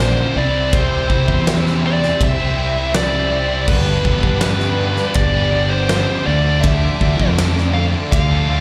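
Quiet-loud alternative rock with a cathartic, angsty edge, this live club cut sets a nasal, overdriven lead guitar with a parked wah carrying the melody over a growly, up-front fuzz bass, bright distorted and fuzz guitar riffs tucked in the background with slapback echo, a very quiet, lush bowed string section adding vibrato and portamento on sustained chords, and a huge arena drum kit with a fat snare and punchy kick that enters at 0.7 seconds, all moving from C to G to Dm.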